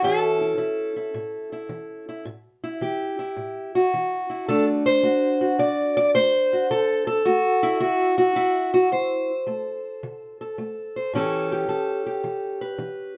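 Close, detailed microphones and a touch of light reverb frame a dark, boxy parlour-sized steel-string acoustic guitar, fingerpicked up front as the lone voice in this laid-back, gritty country blues excerpt at 108 BPM with a swung feel in A mixolydian, moving from A7 to D7 at 4.5 seconds and back to A7 at 11.1 seconds across a range from A2 to D5.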